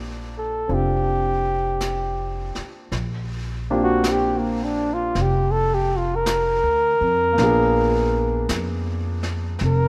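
A swung 4/4 feel carries this romantic, late-night jazz ballad fragment, where a concert grand piano with audible action noise and long sustain and a woody, growly pizzicato upright bass play from the start, a mellow, breathy flugelhorn with scooped notes sits up front from 0.4 seconds and takes a solo from 2.9 seconds, and a quiet vintage brush drum kit with a rolled-off top joins at 0.7 seconds, the whole captured with light reverb in a rough home demo mix.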